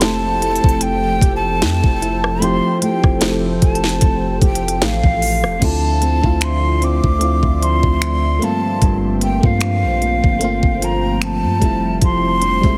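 A heavily compressed, radio-like sound with light reverb frames this short, sensual late-night passage of contemporary R&B, cut from a longer piece and moving at 75 BPM in 4/4 with a gentle swing on the sixteenths. Up front, a trap kit sets the groove with a knocking kick, sharp snare, crisp hi-hats, finger snaps, rim clicks and a crash cymbal, its produced electronic sound carrying a tape-like warmth, while a soft, round 808-style bass sits deep and dark beneath it. A breathy, hollow jazz flute carries the melody in a straight tone, treated with delay and sounding distant even as it stays prominent. An FM electric piano with tremolo warbles through the accompaniment with a vintage character and a faint noise layer. In the background, a thumb-plucked flamenco guitar adds dark acoustic arpeggios with audible finger squeak, and a glassy, ethereal FM pad holds sustained chords through ensemble chorus and its own reverb. 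The harmony opens on Fmaj9, shifts to Dm9 at 5.6 seconds and Gm11 at 8.4 seconds, then returns to Fmaj9 at 11.6 seconds.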